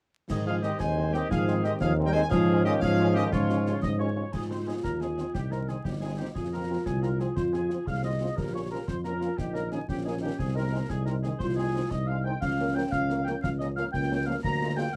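Heard from further back in a wet booth with vinyl crackle over it, this excerpt of a spirited, rousing military-style march for wind band moves in 6/8. A distant, roomy trumpet section carries the melody, while a mellow euphonium, a close-miked woodwind section with vibrato and, from 3.8 s, a pure wooden piccolo with a soft attack add second lines over sustained trombone chords, French horn accompaniment in the background and a warm, up-front tuba bass. Concert snare drum, clash cymbals and concert bass drum sound close and dry, with dark cymbals, as the music passes from its short opening section into a longer second one at 4.3 s.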